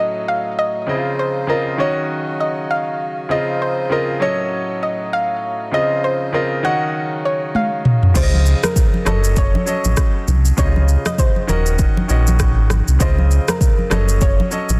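Romantic and sunny, this afrobeats piece opens with a soft, round pluck carrying the melody through chorus and delay, over a brilliant concert grand piano and the reedy, breathing chords of a pedal harmonium that pumps under sidechain until 8.1 seconds. A drum fill from the electronic afro-pop kit arrives at 7.5 seconds, with its deep kick, rim click, shaker, toms and crash sitting up front and a softly clipped snare. At 8.2 seconds a full sine sub bass with octave joins, along with low-tuned congas struck by hard hands in the background, all within a swung groove, light small-room reverb and a dense, heavily limited modern master.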